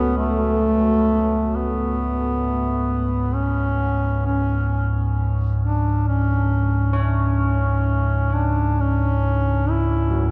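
A straight 4/4 pulse at 66 BPM moves slowly beneath this vast, ominous ambient fragment in C#, tuned in sen with A4 at 442 Hz. A solo duduk carries the melody up front throughout, its folk-style line full of scooped notes and trailed by a diffuse ambient delay. Beneath it, a deep, rumbling drone sits prominently from start to finish, warbling and vintage-tinged with a dark sawtooth and triangle body, slow attack and long release. A mellow, detuned pad with chorus and a sub octave holds an F#m/C# chord in the background until 1.5 seconds, after which the harmony settles onto a bare C#5. At 6.9 seconds, old church bells enter softly in the distance with clangorous, bronze arpeggios and beating overtones, fading as they ring through a cavernous cathedral reverb.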